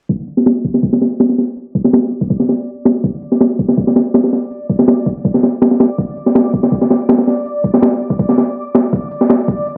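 A gritty, vinyl-crackled sound with light digital ambience and a filter sweep running throughout opens this atmospheric, nostalgic drum and bass excerpt at 163 BPM, where an up-front, compressed sampler-style breakbeat kit with a thumpy kick, high-tuned snare and hi-hats plays from 0.1 seconds, joined at 2.5 seconds by a faint, reversed, detuned triangle texture with a dreamy, granular shimmer and its own reverb, held between D5 and D6.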